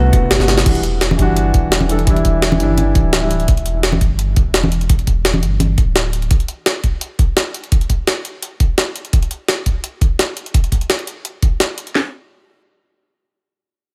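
A dark, mellow grand piano with delay opens over a round sine sub bass and a brief, woody kalimba arpeggio with dub echo, the piano's filter sweeping from 0.7 to 3.5 seconds, as this rolling, melancholic liquid drum and bass cut in E minor at 170 BPM moves from Am9 to Em9 and a knocking, cracking electronic kit layers with a gritty, pitched-up jungle sampler kit of crash, hi-hat and high-tuned snare, joined for a while by acoustic congas, before the bass stops at 6.3 seconds and the drums drive on, dry and up front.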